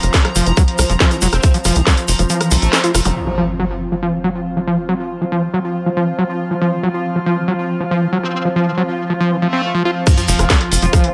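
A straight 4/4 psychedelic trance pulse at 139 BPM drives this alien, hypnotic excerpt. A tight kick plays until about 2 seconds, while a cracking snare, metallic hats, punchy sequencer bass and grainy egg shaker play until 3.1 seconds. All of them return for the drop at 10.1 seconds, with the bass rejoining at 10.3. A squelchy, distorted acid bass riff with delay, a pulsing, tempo-synced chord texture under a filter sweep, an airy, breathy pad with phaser and a faint metallic wobble bass ride the sidechain pumping, and electronic zaps, impacts and a sub drop punctuate the light digital ambience.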